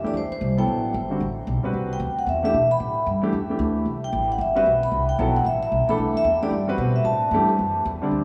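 A vibraphone, baby grand piano and upright bass all sound together from the first moment of this brief modal jazz cut, taken from a longer piece and set at a brisk 226 BPM in 4/4 with a swung eighth-note feel. The mood is intense and searching, built in A dorian over a single Am9 chord. The vibraphone carries the melody with medium mallets, its metallic, ringing tone colored by a slow motor vibrato and placed up front, until it drops out at 7.8 seconds. Beneath it, the warm, natural piano supplies the accompaniment in its middle register, while the pizzicato upright bass on gut strings gives a woody, dark and thumpy low end, both continuing to 8.2 seconds. A wet cathedral reverb with a long tail places the trio in a vast, echoing space.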